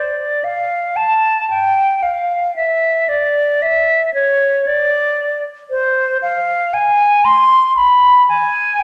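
Grave and solemn, this baroque-style classical fantasia for solo concert flute unfolds in a slow, rubato 3/4 at about 58 BPM, cut from a longer piece. The flute sits up front with a pure, hollow tone, tongued notes and vibrato, ranging from C5 to C6 across its 8.8 seconds. A wet recital hall reverb with a 1.5-second decay surrounds the line.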